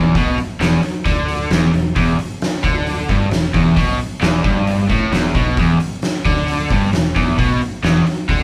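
A double-tracked, compressed overdriven electric guitar riff sits up front in this brooding, gritty blues rock and southern rock power trio excerpt on a single E minor chord, backed by a saturated, oversized low-tuned drum kit with a fat snare, punchy kick and hi-hat in a bright stone room, while a round, foam-muted overdriven picked bass stays in the background, the band playing live together under a moderate large studio reverb.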